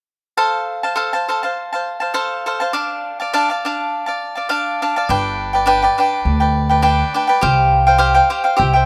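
A lightly swung 4/4 pulse at 103 BPM drives this proud, romantic mariachi-style Mexican folk excerpt in F major, where a bright, crisp, picked cavaquinho sits up front from 0.4 s over chords moving from F through Dm and G to Csus4, joined at 5.1 s by a woody, thumpy pizzicato upright bass on steel strings, with light reverb on a rough home demo mix.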